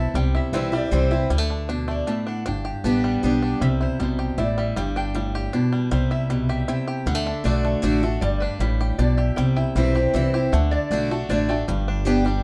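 Bluegrass in a straight three-beat metre, virtuosic and joyful, this short excerpt cut from a longer piece runs its chords around C, D and G throughout. A twangy, percussive banjo played with fingerpicks and a metallic, nasal lap resonator guitar played with slide and fingerpicks share the melody, the resonator sitting higher above the banjo's middle register. Beneath them, a boxy picked archtop guitar carries the accompaniment up front, with finger squeak audible on the strings. A woody, pizzicato upright bass with steel strings anchors the low end, also placed up front. The sound is dark overall, set in a moderate studio reverb, with the lead instruments mixed softer than the rhythm pair. All four play from the start to the close at 12.4 seconds, with a new section arriving at 3.6 seconds.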